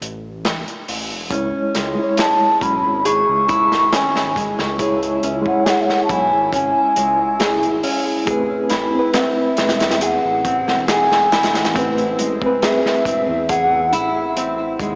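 A hollow wooden flute carries the melody in this smoky, dark trip hop excerpt, entering at 2.2 seconds with a pure, distant tone, tongued notes, vibrato and a trail of tape echo. Beneath it, a crunchy breakbeat kit of kick, snare and hi-hat sounds saturated and gritty with a rolled-off top, while a deep, rumbling detuned saw bass adds a beating low end. At 1.3 seconds a reedy electric piano arrives with fast tremolo and its own tape echo, alongside a bright, fingerpicked nylon-string guitar playing arpeggios through a diffuse ambient delay. A very quiet reversed texture swells in from 2.8 seconds, granular and dreamy. The harmony moves from C# minor to Amadd9, and the mix is soaked in a lush hall reverb with a small-speaker character.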